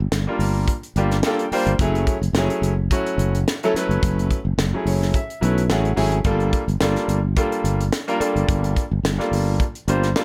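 Electric jazz fusion at 108 BPM in 4/4, this intense, funky passage is cut from a longer piece and carries a light swing on the sixteenths, tuned slightly under standard pitch at A4 = 438 Hz. A sustaining fretless electric bass sits up front with a growly, amped tone, holding the low register from the very start at 0.0 s. A tight funk drum kit joins almost at once, its high-tuned snare, tight kick and hi-hat captured naturally in a small room. A brilliant concert grand piano supplies accompaniment with deep low notes and a bright top, stepping out with fills at 1.0 s and again from 4.6 s. The harmony moves from Gm7 to F#m9 and back to Gm9, all wrapped in a light reverb.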